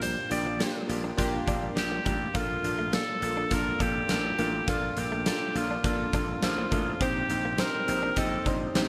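A straight 4/4 groove drives this romantic, nostalgic slice of 1980s-style pop, anchored by a huge arena drum kit with a punchy kick and fat snare drenched in gated reverb, plus a growly, overdriven slap bass. Glossy, detuned synth keys with chorus and pulse-width modulation carry the chords from Gm7/Bb to Bbmaj7 and Cm/Bb, while a very quiet, clean electric guitar plays a compressed, picked riff underneath. On top, a forceful, vintage-toned alto saxophone sings the melody with light vibrato, and the mix sits in a moderate plate reverb with a bright digital production.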